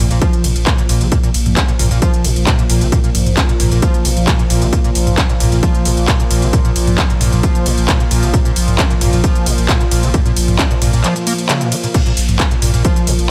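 A digital ambience surrounds this short cut from a longer piece of driving peak-time techno, intense and industrial in mood with a straight feel. Up front sits a heavy, overdriven electronic kick with studio reverb, and beside it a layered techno kit of crash, handclaps, smooth hi-hats, ride and toms, also overdriven and reverberant, entering at 0.1 seconds. Underneath, a deep, thick sine sub bass holds a single low note, saturated and filtered, pumping with sidechain compression. The lead voice is a squelchy, gritty square-wave acid bass riff with a resonant filter pluck, dressed in distortion, chorus, 12-bit sampler grit and delay, playing until 13.1 seconds. Behind it all, an evolving, warbling analog drone of detuned sawtooth and pulse-width-modulated waves swells in slowly and sustains with a long release, its vintage chorus also pumping in time.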